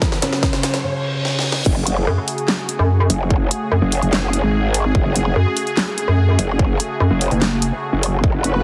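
A half-time 4/4 groove drives this menacing, chaotic slice of heavy wobble dubstep, where a soft, felt-muted upright piano with vintage sampler grit and dub echo carries the melody over sustained chords from a lush, detuned sawtooth pad, drum fills, a riser and a reverse cymbal in a short build-up, until the drop at 1.7 seconds unleashes a growling, formant-filtered bass, joined at 2.1 seconds by a pulsing pluck wobble bass, both saturated and up front, beneath a punchy electronic kick and a dubstep kit with a huge snare and handclaps, the whole mix pressed into a heavily compressed, radio-like sound with light reverb.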